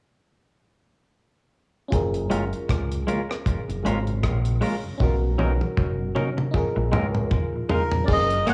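A reedy, breathy melodica takes the melody up front at 7.7 seconds, near the close of this smooth, romantic lovers rock reggae fragment in F# major at 78 BPM with a swung sixteenth feel. Underneath, a round, punchy fingered dub bass, a dry, cassette-tinged drum kit with a tight kick, and a glassy, bell-like FM electric piano with chorus and delay all enter at 1.9 seconds. They are soon joined by a soft, flute-like tonewheel organ and clean, twangy guitar stabs with echo. The harmony moves from F#maj9 to Bmaj9 at 5.0 seconds, where a drum fill begins, then settles on A#7sus4, all in the small-room sound of a home cassette recording.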